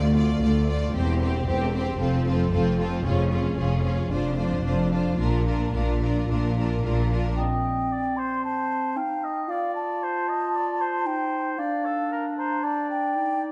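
A full string section builds at 114 BPM in C dorian in this heroic, adventurous film-score cue, with bright, intense violins carrying the melody above a clear second violin line, rich violas, smooth cellos in the background and up-front double basses with expressive portamento, until the strings stop at 7.4 s and a determined woodwind passage takes over with an airy, hollow flute, a distant, roomy oboe and a dark solo clarinet, the whole set in a dark production with moderate stage reverb.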